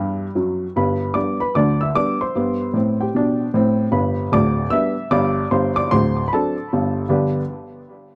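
Stride piano jazz at 151 BPM in G major, swinging and exuberant: a woody, slightly detuned upright piano with short sustain and a touch of tape echo plays solo up front from 0.0 to 7.4 seconds, opening with a brief fill before moving through G, C5/G and D7 and back to G in a dry, close 1970s-style studio sound with light reverb, cut from a longer piece.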